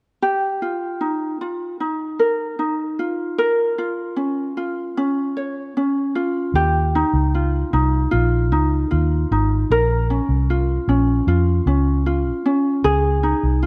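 A straight 4/4 pop groove at 76 BPM in Eb mixolydian carries a heartfelt, carefree mood, with a light, fingerpicked acoustic ukulele up front from the start, joined at 6.5 seconds by a dark, round, foam-muted vintage electric bass, all wrapped in light studio reverb and the worn, warbly pitch drift of old cassette tape as the chords move from Ebadd9 to Bbm and land on Dbadd9 in this short excerpt.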